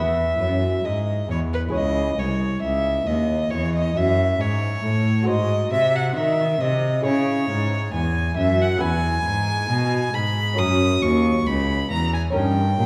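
A rich, smooth violin with vibrato sings the melody up front in this flowing, dance-like baroque-style sonata movement at 68 BPM in 4/4, alongside a focused, bowed cello bass with its own vibrato and a bright, delicate fingerpicked lute on doubled nylon strings, all heard from further back in a wet recital hall with a 1.4-second reverb in this passage cut from a longer piece.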